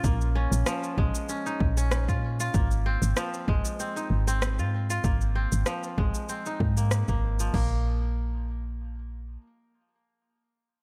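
Earthy and hypnotic, this organic downtempo excerpt moves at 96 BPM in 4/4 with a light swing on the sixteenths. A fingerpicked kora plays ringing, crisp arpeggios through a digital delay, set quietly in the mix over chords moving from Bbm7 to Ab6. Beneath it, a woody FM bass sits up front with a soft, round, dark tone, its fast attack decaying under sidechain pumping. A deep house drum kit with a punchy kick and crash cymbal drives the groove, layered with an electronic shaker and rim click, both parts overdriven. The drums and shaker drop out around 7.5 seconds, leaving the bass and kora to ring on in a dry sound until the cut.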